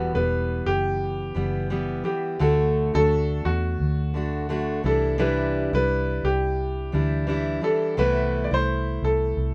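A gently swung 16th-note pulse carries this tender, reflective pop fragment, where a bright, woody upright piano sings the melody over a warm, fingerpicked steel-string acoustic guitar and a dark, round, foam-muted vintage electric bass, all three sitting up front in light reverb as the chords drift from Emadd9 through D and Cadd9 to Amadd9/C.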